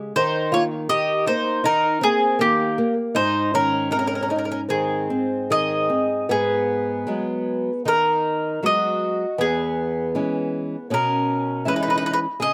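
Recorded dry in the open air, this excerpt of a longing, passionate fado-style ballad moves at a rubato 79 BPM in 4/4, shifting from Ab major to G# minor at 6.3 s. A small-sounding nylon-string guitar with fresh strings and a slapback echo is fingerpicked as accompaniment from 0.0 s. From 0.2 s, a round, up-front mandolin carries the picked double-string melody, while a boxy, shimmering twelve-string archtop adds a warm, octave-doubled fingerpicked second line.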